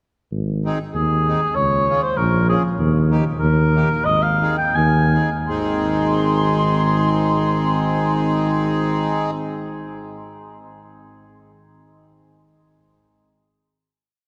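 Bathed in a wet cathedral reverb, this short, bouncy and jolly alpine dance-band piece in Ab major and 2/4 moves at 77-98 BPM with a gentle swing and rubato, as a mellow tuba opens at 0.3 seconds with root-and-fifth bass on the main beats, a reedy, close-miked accordion adds off-beat triads, and a distant oboe with light vibrato sings motif-based song phrases in a classical style, the tempo slowing from 2.8 seconds until the final chord arrives at 5.5 seconds.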